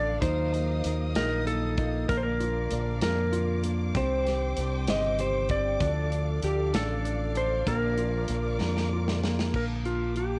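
A clean lap steel guitar carries the melody with slide and volume swells over a round, up-front fingered electric bass, an intimate concert grand piano with audible action noise, distant, lush bowed strings with portamento, a bright, compressed electric guitar picking arpeggios in the background and an acoustic drum kit with a punchy kick and a fill at 8.6 seconds, shaping a romantic, heartfelt six-eight pop ballad at 64 BPM in Bb major, cut from a longer piece, all set in a small room and colored by the warbly pitch drift of worn cassette tape.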